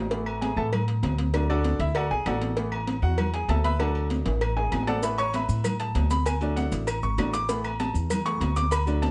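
A bright upright piano opens this festive, sunny salsa excerpt at 0.0 seconds, polished and present with short sustain, taking a solo over chords that move between Asus2 and D. Beside it, an upright bass plucked on gut strings gives a thumpy, woody low end, and both sit up front. Thick-skinned, high-tuned congas sound distant in the background, joined at the same moment by a round, low-tuned cowbell struck with hard hands. Shortly after come ringing metal-shell agogo bells and timbales with a vintage, band-limited tone, and dry claves tucked behind. A drum fill runs from 4.3 seconds, and at 5.0 seconds grainy, mellow maracas slip in quietly among the percussion. A moderate studio reverb gives the band a lively, natural space.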